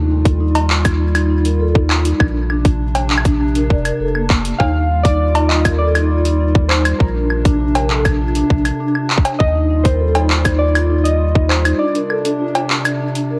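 Worn, warbling cassette-tape sound with drifting pitch and light reverb frames this playful, intricate IDM excerpt at 100 BPM in Eb lydian, where a dark, detuned pad holds sustained chords with chorus and sidechain pumping, a soft-mallet vibraphone rings out arpeggios with fast motor vibrato and dub echo, a round sine sub bass sits deep and up front, an overdriven analog drum machine booms with metallic hats, cabasa, cowbell, handclaps and woodblock beside a tight electronic kick that drops out at 11.5 s, and lo-fi synth keys carry a mellow, nostalgic melody with chorus and dub echo from 4.6 s into a break at 11.8 s.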